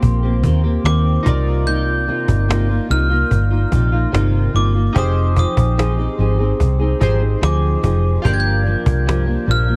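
A cassette-tinged, reverb-washed wash of mellow, wistful indie bedroom pop at 73 BPM in F dorian, where woody fingerpicked steel-string acoustic guitar with lush chorus and warbly pitch drift, round, punchy foam-muted electric bass up front, a snappy close cajon and glossy pulse-wave retro synth keys with a filter sweep carry the Cm11, Fm7 and Gm7 chords while a sparkling, bell-like glockenspiel melody with analog delay enters at 0.9 seconds in this short cut from a longer piece.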